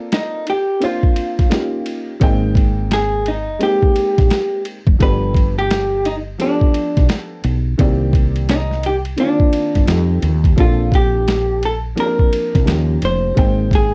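Jazz-hop with a warm, relaxed mood, this short excerpt sits at 86 BPM in Bb major with a swung 16th feel, as a dark, worn upright piano with audible action noise and a slightly detuned, boxy tone lays down extended chords like Bbmaj9, Eb9 and Cm9 while a clean, picked hollow-body jazz guitar carries the melody with cassette tape coloring. A gritty, compressed boom bap drum kit with a thumpy kick, medium-tuned snare, hi-hat and ride sits up front from the start, and a round, punchy fretless bass with a woody character enters at 2.2 seconds after a brief opening break. Light reverb and the lo-fi cassette home-recording character give the whole piece an intimate, mellow glow.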